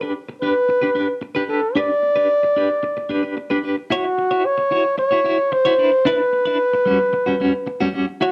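Danceable and celebratory, this short disco cut, taken from a longer piece, puts a mellow flugelhorn up front playing a jazz-style solo melody with scooped notes, while a bright, twangy electric guitar, picked and compressed, carries the accompaniment with tremolo and a cassette tape tint. Both parts share plate reverb inside a modest small room, captured as a home recording on cassette. At 3.9 seconds the harmony moves from a G/D opening to C#madd11/E, then to Cmaj9/D, before settling on Gmaj7#11.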